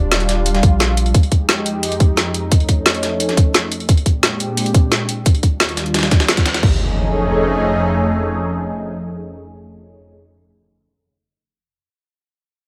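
Liquid drum and bass at 175 BPM, dreamy and lush, cut from a longer piece. A thick, detuned sawtooth pad with chorus, phaser and sidechain pumping carries bright sustained chords from Ebmaj7 through Fm9, Faug7 and Bb13, with a filter sweep over the first 6.6 seconds, while a round sine sub bass sounds only briefly at the start. Layered electronic kits with a tight kick, woody snare and metallic hats sit up front over a gritty, tape-warm sampler kit in the background, and the drums drop out near 6.7 seconds as an electronic impact arrives on F7alt, all in light digital ambience.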